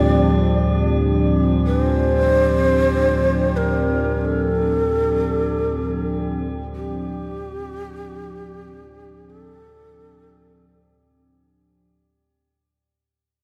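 A breathy shakuhachi with vibrato drifts between G4 and D5 through delay over a deep, rumbling D minor drone, a bright, detuned chorused pad and an eerie, metallic FM texture in this unsettling dark ambient drone in free time, all steeped in a lush hall reverb and fading out across its 11.9 seconds.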